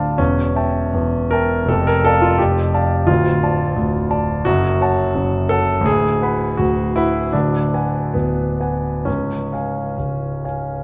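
A romantic character piece for solo piano, passionate and brooding, moving with rubato in 2/4 at roughly 63-89 BPM and shifting from D minor to F# minor at 4.5 s. The concert grand sits intimate and up front, with deep bass, long sustain, a polished tone and audible action noise, ranging from C#1 to B5. A wet scoring-stage reverb surrounds it, and the chords travel from A7/E through Dm into F#m and on to a closing C# at 9.1 s in this brief cut from a longer piece.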